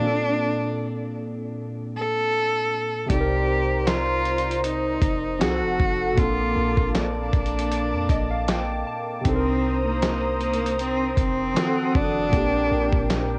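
A lightly swung sixteenth-note groove in 4/4 takes hold at 3.1 seconds, as a gritty, up-front sampler-style drum kit with a thumpy kick joins a deep, boomy 808-style bass and a warbling, chorused analog pad alongside the rich, bowed cello melody with its vibrato and the round, detuned analog keys that have carried this longing, sensual contemporary R&B excerpt from the start, all set in light reverb on a home cassette recording, with a synth keys fill arriving at 7.7 seconds.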